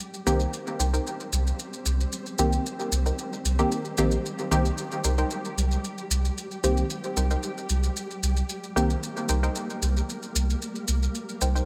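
Dub techno at 113 BPM in C minor, meditative and deep, resting on a single Cm7 chord throughout this short cut from a longer piece. A round, tube-saturated sub bass sits up front from 0.3 seconds, joined by a muted, detuned chord stab with chorus, phaser and dub echo that ends at 8.9 seconds, while a higher, short-decaying stab riff with chorus and dub echo enters at 0.8 seconds. Mellow acoustic maracas and a flickering, granular texture with its own reverb run the full length, all set in a huge ambient reverb with a long 4.5-second tail.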